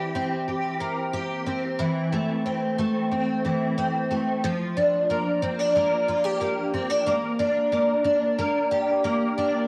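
A cassette home recording, bathed in a wet spring reverb and a touch of studio ambience, gives this short dream pop fragment, cut from a longer piece, a floating air. A picked twelve-string acoustic guitar plays alone throughout and sits up front, its bright, octave-doubled jumbo tone shimmering through an ensemble chorus and an analog delay. The mood is dreamy, set in a straight 4/4, with the guitar staying between E3 and G4. The harmony opens on C7 and Am/E, then shifts at 4.4 seconds to a second passage built on Bb6 and Gm/Bb, which carries through to the end at 9.7 seconds.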